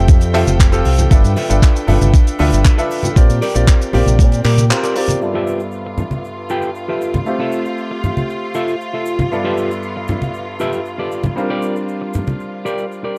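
A gritty, thumpy electronic kick drum and an up-front fingered bass with an envelope filter drive this sunny, groovy nu-disco excerpt at 117 BPM in G mixolydian, alongside a tight funk kit with handclaps, hi-hat and shaker, hard-hand cabasa and congas, a clean semi-hollow electric guitar riff and a brilliant vintage grand piano, both with tape echo, and lush, biting symphonic strings that pump under sidechain, until the kick and bass drop out by 4.7 seconds for a band accent and break, after which filter sweeps move through the guitar and piano from 5.2 seconds within a dark studio reverb.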